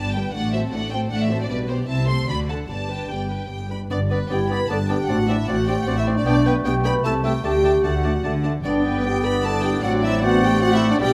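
Bowed strings open this cheerful, spirited classical-period movement in a quick triple metre, with rich violins carrying the melody over a clear, floating second violin line, background violas and warm cellos and double basses. At 3.9 seconds a vintage-toned oboe, a very quiet hollow flute group, a background bassoon and a smooth-topped French horn section holding sustained chords join in, followed at 4.3 seconds by a distant, roomy clarinet, all in a moderate recital-hall reverb.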